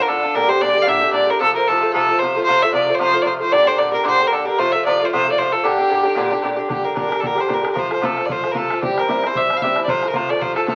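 The recording has the worn sound of a very old 78 rpm disc, with vinyl crackle over a wet, small-room reverb, and it is cut from a longer piece. This is a Celtic reel, dark, lively and wild, with a swung eighth-note feel. A single fiddle carries the melody up front, its tone nasal and focused with a light vibrato, heard close and bowed. An Irish bouzouki plays the accompaniment beside it, picked on metallic double strings with an acoustic, warm sound, moving through chords of G minor and F before reaching C in the second half. A damped, tight bodhran enters at 6.7 seconds, sitting low in the mix, as the tune moves into its second section.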